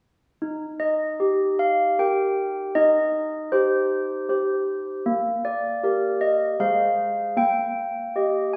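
Serene and festive, this short classical passage for handbells, cut from a longer piece, moves in an unhurried, steady three-beat pulse with the ringing, clear bells sounding alone from 0.4 to 8.6 seconds across a span from Ab3 to Ab5. The bells have a dark, smooth, bell-like tone with medium clappers and sit up front, while the listener seems placed further back in a recital hall whose wet reverb lingers around them. The harmony settles on the home chord before drifting through gentle minor colours and coming to rest near the end.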